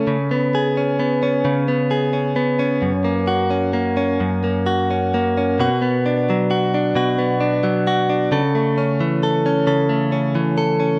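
This short pop excerpt moves in a slow, straight 6/8 at 44 BPM counted in dotted quarters, with a melancholic, aching mood in B minor and tuning set to A4 = 445 Hz. A single clean electric guitar carries the whole 11 seconds alone, recorded direct and picked, sitting up front with a compressed, warm tone and a touch of spring reverb. Its range runs from F#2 up to A4. The harmony moves through C#5 and F# in the opening section, then shifts at 5.6 seconds to Bm and A/C# for the second. The room carries light reverb, and the rough home demo mix lets a faint mains hum sit beneath the guitar.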